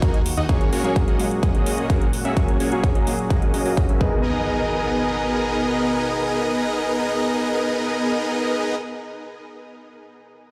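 A huge, detuned supersaw lead carries a euphoric riff through this anthemic festival progressive house excerpt in G# minor at 128 BPM, filter-swept over the first 4.2 seconds and pumping against a punchy kick and metallic hats, while a dark baby grand piano and a lush, warbling pad with 12-bit grit sit in the background over a fat analog bass note that stops at 0.5 seconds, before an electronic impact arrives at 4.0 seconds as the chords move from F#add9 to G#madd9 in a large, reverberant room.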